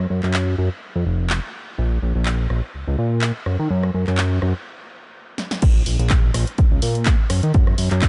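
A swung 4/4 groove at 125 BPM drives this funky, nostalgic slice of filtered disco house in Bb minor, cut from a longer piece. A fat, detuned analog bass carries the track from the start, sitting up front with a thick blend of sawtooth, square and triangle tones, a touch of ring modulation, sidechain pumping and a low-pass filter sweep across its sustained, fast-attack notes. A punchy analog drum machine joins almost at once with crash cymbal, handclaps, hi-hat, rim click and snare, its tape-warm hits carrying the air of a large room. The music stops at 4.7 seconds, and a drum fill at 5.4 seconds leads into the drop at 5.6 seconds, where an up-front electronic kick drum enters alongside the bass and drum machine. The mix is dry, with a soft top end.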